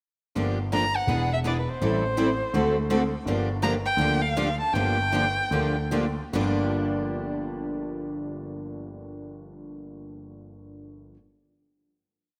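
A rough home demo mix sits in a lush hall reverb, framing a complete, bittersweet and fiery piece of jazz manouche in G minor that swings at 141 to 166 BPM before slowing from 3.3 seconds into a final chord. Up front, a bright steel-string guitar with fresh strings and audible finger squeak plays four-to-the-bar rhythm with clipped accents on two and four, while a boxy parlour guitar adds a second rhythm part in the background and a concert grand piano supplies a deep, short-sustained two-beat root-and-fifth bass. A focused, warm violin with vibrato carries a motif-based melody in sentence phrases from 0.7 to 5.9 seconds.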